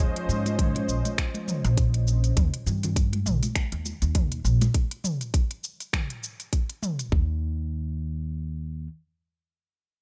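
A woody, dark upright bass sits up front in this peaceful, earthy organic downtempo excerpt at 101 BPM in Eb mixolydian, its pizzicato notes pumping with sidechain and carrying on until 8.9 s. A tight electronic kick and a produced kit of smooth hi-hat, cabasa, finger snaps and toms share the foreground with a swung sixteenth feel, while bright, hard-handed congas sit in the background until 4.7 s. A detuned, vintage sawtooth pad with chorus and a slow attack warbles on a Dbmaj9 chord until 2.4 s, after which the harmony moves to Eb and the closing bars drop their chord altogether.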